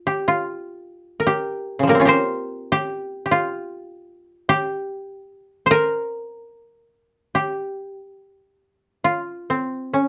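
A lone koto opens this brief excerpt of Japanese chamber music, heard solo from the first moment to its close at 10.1 seconds. The mood is calm and austere, with a rubato feel that drifts loosely around 64-77 BPM in 4/4, centered on C in the sen scale. Played with fingerpicks, the koto has a woody, dry character and sits up front, its notes ranging from Db3 to C5. Close, detailed microphones catch the grain of each plucked string, while light reverb adds only a faint halo of space around the instrument.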